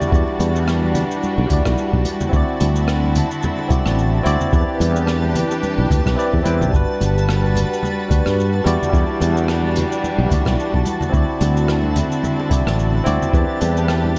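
Blissful sunset chillout at 109 BPM in C lydian with a gentle 16th-note swing, cut from a longer piece, where a growly, up-front fretless bass and a deep, tape-toned electronic kick anchor a barky tine electric piano with delay, dark sul tasto chamber strings holding soft-attack chords, a vintage brush kit with cabasa, hi-hat and rim click, very quiet ringing congas and bongos, and a sparkling granular shimmer in the background, all in a small room with light reverb and a mellow, rolled-off production over chords moving from Em9 through D9, Cmaj9/E and Gmaj7.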